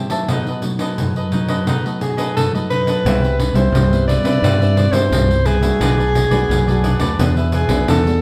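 Heard from further back in a room washed in wet studio reverb, this joyful, playful samba and choro passage opens with crisp, picked cavaquinho, dark, fingerpicked classical nylon-string guitar with finger squeak and a jingly pandeiro struck with hard hands, before a mellow soprano saxophone with light vibrato, scooped notes and slapback echo takes the jazz-style solo melody at 2.0 s and a growly fingered electric bass joins up front at 3.0 s.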